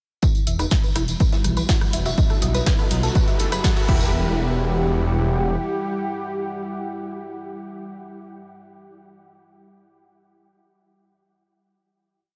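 Melancholic and dark, this short melodic techno piece at 123 BPM in E harmonic minor builds over an up-front four-on-the-floor electronic kick, a punchy analog drum machine with programmed hats and backbeat, a very quiet dry cocktail drum kit looping an edited breakbeat, hand-played tambourine sixteenths and a menacing swelling detuned saw bass, while a tight sequenced synth runs a filter-swept 16-step arpeggio, a thick, nasal unison lead with gritty 12-bit character and analog delay repeats its riff over a pedal note, a moody analog pad and an evolving ambient pad with built-in reverb hold chords beneath, and a background riser from 1.7 s leads into the final note at 4.1 s, where the lead and analog pad sustain until 8.2 s and the ambient pad lingers until 8.6 s.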